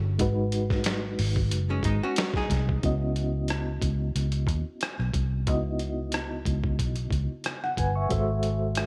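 A lightly swung 16th-note groove at 91 BPM in 4/4 sets a sultry, smooth neo-soul and R&B mood in C# minor, carried by a gritty, compressed, pitched-down boom bap kit with a thumpy kick, medium-tuned snare, rim click and hi-hat that joins at 0.2 seconds, over a round, punchy, foam-muted electric bass sitting up front. A reedy, mellow electric piano with fast tremolo provides accompaniment through its built-in speakers, while a dark, clean, picked hollow-body archtop guitar adds a second line until 2.8 seconds. Chords move from G#m7 to C#m11 and close on G#7b9b13 near 8.1 seconds, all in light digital reverb, in this short cut from a longer piece.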